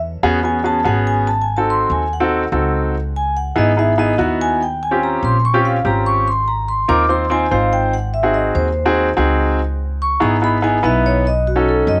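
A straight 4/4 pulse at 144 BPM carries this lively, sophisticated Afro-Cuban jazz excerpt, where a thumpy, dark pizzicato upright bass and a clear, intimate upright piano with audible action noise and long sustain sit up front, while a ringing, metallic vibraphone played with medium mallets and its motor off takes the solo over chords such as C#m9, D#13 and B9, all set in light studio reverb above a faint mains hum.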